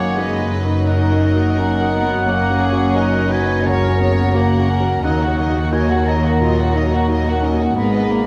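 Cinematic, emotional orchestral film score at 87 BPM with a hopeful, uplifting rubato feel, where a dark, sul tasto violin section carries the melody over D#m harmony, alongside a warm distant oboe, a mellow clarinet and a floating, pure second violin line, while an intimate concert grand piano with audible action noise, very quiet violas, a background French horn section holding sustained chords, softly ringing fingerpicked harp arpeggios, and a bass line from close cellos and double basses all sit within a wet scoring-stage reverb.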